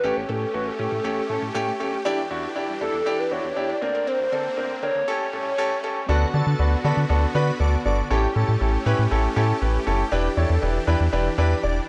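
Upbeat and summery, this pop excerpt sets a hollow, woody clarinet-like synth lead with chorus and analog delay over clear grand piano with audible action noise, huge detuned supersaw chords, a very quiet analog pluck arpeggio and a deep, up-front analog bass, until the drop at 6.1 s hands the melody to an airy, dreamy background lead, all in a dry, gritty cassette-tape sound with light digital ambience.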